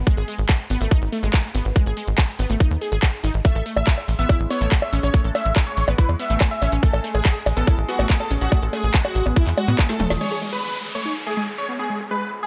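Psychedelic trance at 142 BPM in G# phrygian, psychedelic and alien in mood, this short cut opens with a tight, punchy sawtooth sequencer bass with tube saturation, a tight electronic kick and a garage kit of woody snare, metallic hats, bongos, handclaps, toms and crash, all up front, while a lush, detuned unison pluck carries the riff through sidechain pumping and digital delay. At 3.4 seconds a huge, thick supersaw melody arrives with vibrato, phaser and delay, and from 4.0 seconds a ring-modulated drone of moving, resonant overtones sits in the background with chorus and reverb. A drum fill and band accent lead at 10.2 seconds into a closing passage where the bass and drums stop, a downlifter sounds, and filter sweeps run over the pluck and the drone.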